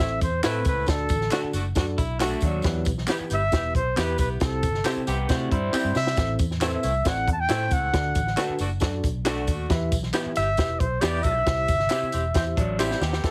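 Heavily compressed, radio-style sound with light reverb frames this urgent, driving excerpt of uptempo 1960s-style soul at 136 BPM in 4/4, cycling through Am, D, Em and C. A breathy, close-miked trumpet with scooped notes and vibrato carries the melody up front, shadowed by an edgy, punchy saxophone section, while a worn, slightly out-of-tune tine electric piano comps and a dark, foam-muted fingered bass anchors the low end. A dry cocktail kit with a high-tuned snare and punchy kick drives things along, with fills at 5.7 and 12.8 seconds; tambourine, egg shaker and group handclaps sit in the background, a bright, twangy lo-fi guitar adds stabs, and a second slightly broken-up guitar plays a riff from 2.0 to 6.1 seconds, returning briefly at 12.6 seconds.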